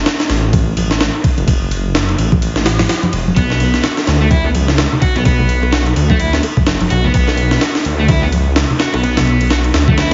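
A heavily compressed, radio-like sound with vinyl crackle, light digital ambience and a dulled top end frames this raw, funky breakbeat at 127 BPM with a 58% swing on the 16ths, where a thick, menacing detuned saw bass and a gritty, pitched-up sampler-style kit with a thumpy kick, high-tuned snare and ride sit up front, bright congas and bongos play in the background, and from 3.4 seconds a crunchy, picked electric guitar riff with tube saturation, 12-bit grit and digital delay joins as the harmony moves from F#m to Bm in this brief cut from a longer piece.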